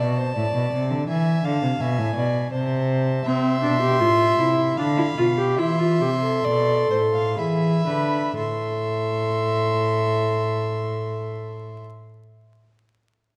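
Classical baroque-style fugue for string quartet in A minor and 3/4, contemplative yet driving, cut from a longer piece, its tempo easing between 2.2 and 8.4 seconds as a warm first violin with light vibrato carries the high melody over a close, rich second violin, an up-front reedy cello bass and, from 3.3 seconds, a viola accompaniment, all bowed with gut-string period tone in a dark production with vinyl crackle and moderate concert hall reverb.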